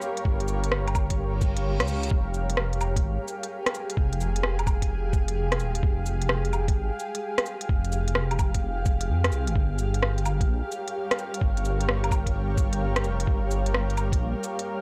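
A dark, detuned sawtooth bass rumbles up front through this rainy, nocturnal future garage excerpt, its deep unison voices beating against one another with tube saturation and sidechain pumping from 0.3 seconds onward. Behind it, a granular cloud pad holds sustained chords with a slow attack and long release, its blurred, evolving texture bright yet softened by built-in reverb and its own pumping motion. A muffled, thumpy sampler-style kick, compressed and re-recorded in a large room, sits close alongside an organic electronic kit of cabasa, smooth hi-hat, rim click and woodblock, all riding a swung 4/4 groove. A faint electronic reverse cymbal appears briefly from 1.3 to 2.1 seconds, just as the harmony settles from Gm7b5 onto Fmadd9 before returning to Gm7b5 at 9.6 seconds. The whole piece carries a dry, gritty hardware character within a digital ambience, cut from a longer track.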